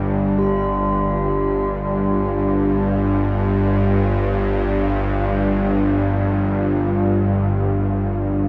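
A tense, nasal, string-like bowed drone with vibrato sits up front beneath a deep, moody pad holding a G5 chord in chorus and shimmer reverb, opening this unsettling, free-time dark ambient excerpt, and from 0.4 s a metallic bronze singing bowl struck with a wooden striker rings with slow beating and its own shimmer in the background, all within a huge, wet reverb whose tail lasts 8.7 seconds.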